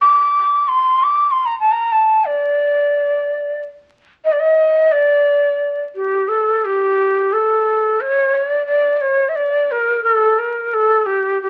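A breathy, reedy ney plays alone up front with bright vibrato and tongued notes in this festive Arabic passage at 88 BPM in 4/4, opening in D maqam saba before turning to A maqam hijaz at 6.0 seconds, tuned to A4 = 436 Hz and heard through studio reverb and the crackle of a very old 78 rpm record, cut from a longer piece.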